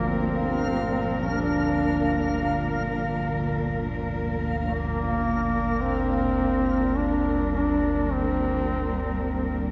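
Straight 4/4 time underpins this vast, ominous dark ambient drone, cut from a longer piece, where a mellow folk-style duduk sings a vibrato melody with scooped notes through diffuse ambient delay over a lush, bowed cello section and a detuned, warbling analog drone thickened by chorus, while a bright, reversed granular texture swells until 5.8 s, when the harmony moves from Bb/G to Gm inside a cavernous cathedral reverb with a dark, rolled-off top end.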